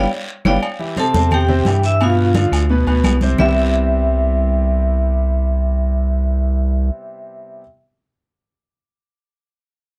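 A round, deep analog bass with a fast attack sits up front in this festive, joyful salsa excerpt, beneath a metallic, airy hard-mallet vibraphone melody with fast motor vibrato and a brilliant, polished concert grand piano accompaniment, while, as an opening band accent rings out, thick-skinned congas, woody background claves, a raspy guiro and saturated, ringing timbales and agogo bells enter and play from 0.5 to 3.5 seconds, all captured in a dry, close 1970s-style studio sound.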